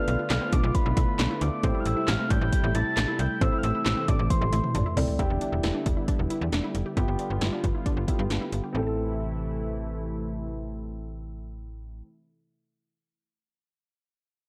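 A dark, lightly reverberant mix carries this melancholic, driving synth-pop excerpt in A minor at 135 BPM, where an overdriven deep house kit with a deep kick, punchy snare and metallic hats sits up front beside a snappy, slap-like FM bass, while a round, octave-layered synth lead with chorus, delay and vibrato sings only until 5.0 seconds over a short-sustain concert grand piano, a smooth, detuned analog pad and a squelchy, resonant blip pluck arpeggiating in the background, the drums playing a fill from 4.3 seconds and dropping out at 8.6 seconds as the chords move from Bm7b5 through Am7, Em7 and G7 back to Am.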